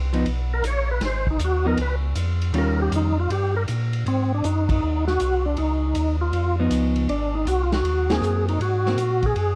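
Greasy and swinging, this short cut from a longer soul jazz organ trio piece moves at 158 BPM in 4/4 with a 67% swing on the eighth notes, centered in Ab mixolydian. A tonewheel organ carries the bass line low in the register, its piping, scooped tone clean and up front with audible key click through a stationary speaker. Above it, a second, percussive tonewheel organ sings the melody from 0.5 seconds onward, fat and lightly overdriven, with second harmonic percussion, chorus vibrato and a slow rotary speaker giving it a rich, moving body. A dark, clean hollow-body electric guitar adds picked accompaniment in two stretches, while a vintage drum kit of hi-hat, kick, ride and snare sits lower in the mix, muffled and lo-fi with a punchy kick, a medium-tuned snare and a rolled-off top, as if heard in a small room. The opening stretch features the organ as soloist over shifting Db and Eb chords before the harmony settles toward Ab, and the band hits accents at 4.6 and 8.0 seconds, all wrapped in light reverb and a dark, warm production.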